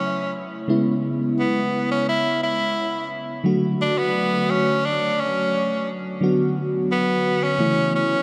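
A straight 4/4 pulse at 87 BPM carries this short, nostalgic and romantic pop passage, with a lush, dark, detuned FM electric piano and its soft pad layer, treated with chorus, playing the chords F#m7, E6, D, Bm and A across the full 8.2 seconds. Over it, a bright, punchy tenor saxophone sings the solo melody with vibrato, trailed by a diffuse ambient delay. The whole dreamy mix is soaked in a cathedral reverb with a 6.8-second decay.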